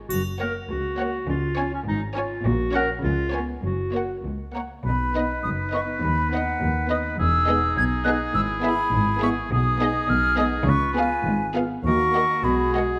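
A playful, whimsical cinematic cue in 2/4 at 102 BPM opens in F# major with the strings: a lush violin section carries the expressive melody over a softer second violin line, a rich viola accompaniment, and a bowed cello and double bass foundation where the basses slide with portamento, while a distant, roomy clarinet adds a second line and a dry, bright triangle sparkles only until 1.2 seconds. At 4.5 seconds a mellow, hollow silver flute enters high above, and from 4.9 seconds the music moves to B major as a clear oboe joins with a soft attack; at 5.1 seconds a close-miked French horn section lays sustained chords in the background. The cut from a longer piece is framed by a moderate scoring-stage reverb that gives the quirky ensemble a polished sheen.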